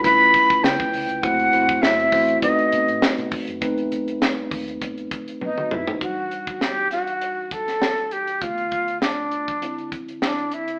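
A polished 1980s jazz-funk pop groove opens with the full band at once: a breathy metal flute carrying the melody up front, a mellow tine electric piano accompanying beneath it, a tight funk drum kit and a round, dark hollow-body bass. The mood is urban and bittersweet, with a light swing to the sixteenths and moody altered and half-diminished chords before a turn toward a richer minor color. The flute's straight tone, soft attack and expressive phrasing sit warmly over the clean, direct electric piano. The dry acoustic drums feature a high-tuned snare and a tight kick on hi-hat, snare, kick and toms, with a drum fill at 5.4 seconds, while the amped, short-scale fingered bass stays in the background and drops out at 6.0 seconds. The band sounds as if it is playing live in one room, bathed in a large studio reverb and filtered to an AM radio sound, in a short cut from a longer piece.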